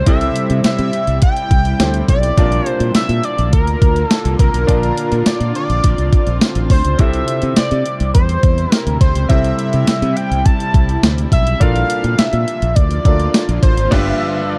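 1980s-style pop at 104 BPM in C mixolydian, this nostalgic, glossy excerpt moves through C6 and Bbmaj7 before a G7 band accent at 13.9 seconds, all within a dark production with light reverb. An overdriven, thumpy 12-bit drum machine with crash, hi-hat, snare and tambourine sits up front beside a growly, punchy fingered bass, while a clear concert grand piano with deep lows and short sustain supplies the accompaniment. A bold, retro octave-doubled sawtooth lead carries the melody through chorus, phaser and tape echo with vibrato and a filter sweep, floating over an ethereal, detuned pad with a warbling octave-up shimmer, slow attack and long release.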